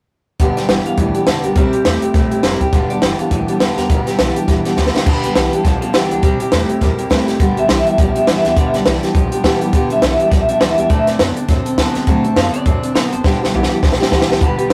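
Opening with a dry, up-front cocktail drum kit, punchy kick and high-tuned snare, alongside a bright picked acoustic guitar, a twangy, slightly broken-up electric riff guitar with spring reverb and a woody, thumpy upright bass in the background, this rollicking rockabilly excerpt in G major swings at 206 BPM as a second electric guitar carries the melody from 0.6 seconds over G, C and D7 changes, with drum fills at 4.8 seconds and from 13.2 seconds, all caught in a rough, saturated rehearsal-room sound.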